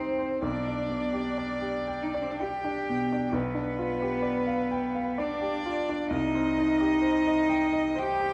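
A bowed cello carries the second line up front, its soft attack and pure, floating sul tasto tone giving this slow romantic movement for piano trio its tender, warm character. Above it, a single violin sings the melody with vibrato and a dark, woody colour that sits at a distance. A baby grand piano supplies a clear, intimate accompaniment from deep in the bass up into the treble, its natural sound close enough to reveal the action noise of the keys. The music moves at 64 BPM in a 3/4 metre with a flexible rubato, tuned to A4 = 442 Hz, and the harmony passes from G/B through G7/B to C minor at 6.1 seconds. A wet recital hall reverb with a 1.6-second decay surrounds the trio in a dark production, and this brief passage is cut from a longer piece.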